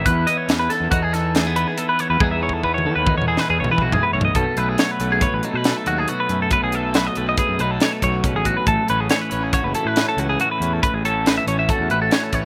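Dry and roomless from its outdoor recording, this bright, playful math rock and midwest emo passage at 139 BPM in 5/4 sets a compressed twelve-string electric guitar picking arpeggios over the clean accompaniment of a second, twangy, compressed, up-front twelve-string guitar, both treated with spring reverb and slapback echo, while an overdriven, fuzzy fingered electric bass holds the low end and a crisp, polished fusion drum kit with a high-tuned snare and punchy kick enters at 0.1 seconds and plays a fill from 2.2 to 4.4 seconds as the chords move from Emaj7 through B13 to A69.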